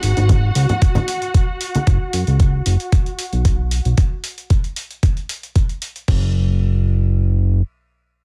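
Feel-good and sunny, this nu-disco excerpt opens with a fat, saturated analog bass carrying a filter sweep up front beside a clear, bowed string section holding sustained chords under its own sweep and sidechain pumping until 4.0 seconds, while a gritty, overdriven sampler-style soul kit with crash and hi-hat, a thumpy electronic kick, and bright, dry congas that drop out at 1.9 seconds ride a lightly swung groove in digital ambience.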